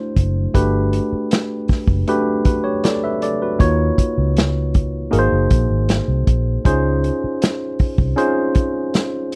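Lush 1970s-style soul at 79 BPM in a straight 4/4, this cinematic, bittersweet excerpt cut from a longer piece moves through D7, Gmaj7, D#m7 and G#7 before settling on C#maj7. A worn, slightly out-of-tune tine electric piano played through a combo amp carries the chords, while a round, foam-muted fingered electric bass sits low and punchy until 8.1 s. A dark, smooth drum kit with a medium-tuned snare, punchy kick and rolled-off top keeps time, all captured close and dry in an up-front studio sound.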